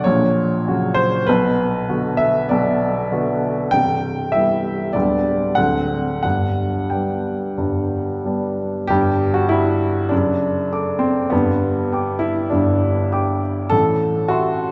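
A woody upright piano sits up front in a wet scoring-stage reverb with a 2.1-second decay, its polished, present tone carrying a long sustain into the space. This is a romantic classical character piece for solo piano in G major, in 4/4 and played with rubato, drifting between 88 and 103 BPM. The mood is bittersweet and passionate, and the piano reaches from C1 up to D6. The opening phrase moves from F#/A# through Bm and Cmaj7 before settling through G/D and D7 onto G at 6.2 seconds. The phrase returns at 8.9 seconds, passing through D/F# and G before the excerpt breaks off on Am7 at 13.7 seconds, cut from a longer piece.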